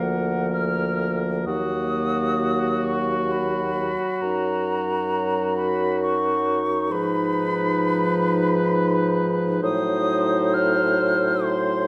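A hollow, airy concert flute carries the melancholic, yearning melody with vibrato and a crisp attack, sitting close in this slow, rubato wind quintet movement in Eb minor at 66 BPM in 3/4. Beneath it, a distant oboe with light vibrato sings a second line, while a clear clarinet and a roomy French horn fill the accompaniment, and a mellow, up-front bassoon with vibrato anchors the bass. The harmony moves from Bb/D through Ebm toward Adim7 in a moderate recital hall reverb, and this romantic classical passage is cut from a longer piece.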